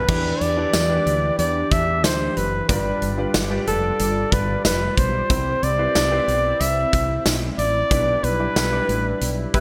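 A mellow flugelhorn sings the melody with vibrato and scooped notes over a concert grand piano, whose action noise and short sustain sit in the background, in this nostalgic yet urgent 1980s-style pop excerpt at 92 BPM in E minor. A shimmering pulse-width pad, a round, woody fretless bass and a big rock kit with a punchy kick, bright cymbals and tambourine carry the Em7, G7, Cmaj7 and G6 changes, with the band hitting an accent from 7.9 s. A funky, detuned polysynth stab lands at 9.5 s, all set in plate reverb with a bright digital sheen.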